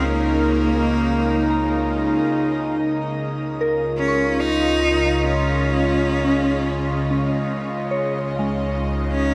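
From the first moment, a peaceful ambient passage in Db major unfolds at 70 BPM in a gentle 3/4. It opens on a Dbmaj7 chord that settles onto plain Db at 2.7 seconds. A clear, focused bowed cello carries the melody up front, close and singing with vibrato, its line trailed by delay. Beside it, an evolving wavetable pad holds sustained chords, bright and morphing, with a detuned unison body, slow attack and long release, colored by phaser and its own reverb. A soft, pure FM synth bell spins arpeggios in the background, its vintage, warbling tone thickened by chorus and echoed by delay. Beneath it all sits a deep, rumbling bass drone on Db, dark and ominous with a nasal ring-modulated edge and tube saturation, while a reedy, breathing hand-pumped harmonium adds a quiet drone until 2.8 seconds, the whole sound bathed in a long, wet shimmer reverb.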